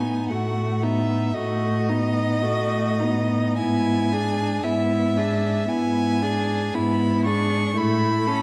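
Classical string quartet music, a slow romantic movement at 50-59 BPM in 4/4 with a rubato feel, tender and warm in mood, cut from a longer piece. The first violin carries the melody from D#5 to C#6 over the second violin's line, while a clear-toned viola accompanies and a close, up-front cello holds the bass. All four parts are played by single bowed players with smooth, even vibrato, and the violins and cello sound rich. The harmony moves from B7 over A to E7 over G# before settling on A at 7.8 seconds, set in a dark production with scoring stage reverb.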